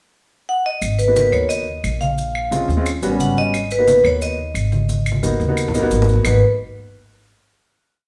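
Recorded live in one room and bathed in a wet, large studio reverb, this short, driving Afro-Cuban jazz piece at 177 BPM in G# minor opens with a vibraphone pickup at 0.5 s, its metallic, ringing tone and slow motor vibrato carrying motif-based call phrases up front. The woody pizzicato upright bass plays a tumbao that anticipates the chords, while bright, low-tuned congas with slaps and open strokes sit in the background beside close, dry claves keeping a two-bar time line and grainy maracas; from 1.1 s a warm grand piano adds syncopated, rootless chord stabs with long sustain. After the G#m7, A#m7 and D#7alt changes resolve back to G#m7, a drum fill at 4.9 s carries the fiery band into a final chord at 6.3 s.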